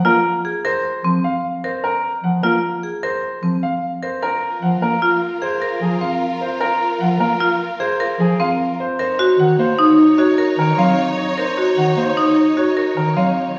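Minimalist classical pattern music with a hypnotic, bright mood, this short excerpt moves at 151 BPM in a straight 6/4. A marimba played with hard mallets sits up front, its woody, percussive rosewood tone cycling through arpeggios. A brilliant, open baby grand piano carries the melody, while a mellow bass clarinet with a soft attack and smooth top supplies the low accompaniment. At 4.2 seconds a lush violin section enters with sustained, bowed chords, close and expressive with vibrato. The harmony rests on a rootless Abadd9 before shifting to Ebm7 at 9.0 seconds, all set back in a large studio reverb.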